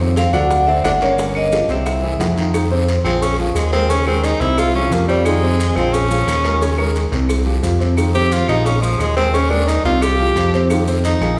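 Set in a reverberant recital hall with a 1.7-second decay, this driving, sophisticated Afro-Cuban jazz excerpt in F minor moves at 177 BPM in a straight 4/4. A clear concert grand piano with deep bass supplies the accompaniment, while a fat, saturated analog bass with a detuned sawtooth tone, fast attack and filter sweep sits up front. A metallic, ringing vibraphone struck with medium hard mallets and coloured by slow motor vibrato carries the melody only from 0.2 to 2.2 seconds. An edgy, punchy tenor saxophone with vibrato plays a second line from 0.2 seconds and takes a forceful jazz solo from 2.5 seconds over chords cycling through Fm7, Bb5, Eb7sus4 and Csus4. Very quiet, tight high-tuned bongos and cowbell and woody claves sit close, with a raspy guiro and grainy maracas further in the background.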